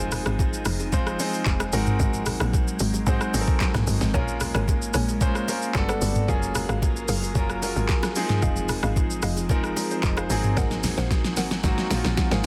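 Soulful and hypnotic, this amapiano excerpt moves at 112 BPM in a straight 4/4, cut from a longer piece. A clear concert grand piano with a deep, natural low end and long sustain plays accompaniment through chords such as Fm7, Ab9, Bbm7, Gmaj9 and Gbmaj9, while a glassy FM pad holds ethereal sustained chords in the background, treated with ensemble chorus and its own reverb and pumping against the sidechain. Underneath, a tight log drum bass delivers punchy, percussive notes with a fast attack and quick decay. The smooth R&B drum kit sits up front with a soft kick, fat snare carrying soft clipping, smooth hats, handclaps, rim clicks, shaker and toms, and it closes on a drum fill from 10.6 s, while very quiet congas and bongos add close, dry hand percussion. At 4.1 s a woody, round mallet-like synth pluck enters with mellow stabs in the background, coloured by chorus, phaser and delay. The mix is dry and dense, with a heavily limited modern master.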